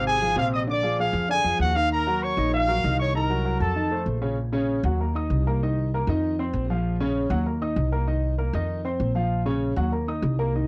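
A lightly reverberant home cassette recording captures this driving, danceable salsa fragment at 195 BPM, where a bright, vibrato-laden trumpet section with a tape-worn tint carries the melody until 4.0 s over a clear, intimate grand piano, itself tape-tinged with audible action noise, and a woody, thumpy gut-string upright bass plucked up front, the piano and bass moving from jazzy seventh chords into a repeating Bb minor progression from 4.4 s.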